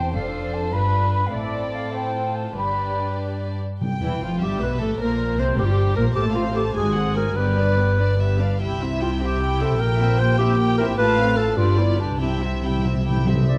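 Spirited and cheerful, this quick classical-period orchestral passage in C major moves in a rubato 6/8 at 91-104 BPM, with intimate sul tasto violins carrying the melody over a second violin line, dark floating violas, pure cellos and close double basses, while an airy, distant flute sings briefly until 3.2 s, an up-front mellow clarinet takes a second line from 4.0 s, and articulate hard-mallet timpani punctuate before a closing fill at 12.2 s, all in a moderate scoring-stage reverb.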